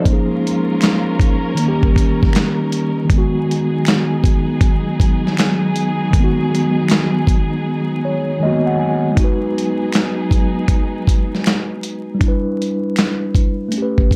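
Reflective and nostalgic, this lo-fi hip hop excerpt in G# minor sways at 79 BPM with a 16th-note swing, as a mellow, clean tine electric piano carries the chords up front, moving from A#m7 to D#7 and G#m7, beside a lush bowed string section with expressive vibrato and a smooth top that stops at 12.2 seconds. A gritty, compressed sampler-style soul kit with a thumpy kick, medium-tuned snare, hi-hat and handclaps sits forward in a large-room sound, while a very quiet finger snap adds a small, human touch. Vinyl crackle and light reverb give the recording a dusty patina, a break arrives at 7.7 seconds, and an Em7 colours the closing passage.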